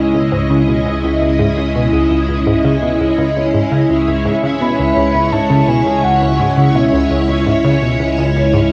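Heard on home cassette in a wet-sounding booth, this hypnotic, expansive stretch of ambient space music sets a lush, up-front string machine ensemble holding sustained chords over a tight, driving sawtooth-and-pulse sequencer riff with a filtered pluck and tape echo, a warbling, evolving analog drone underneath, and, from 4.6 s, a soft, round octave-layered lead melody with vibrato, plate reverb and echo.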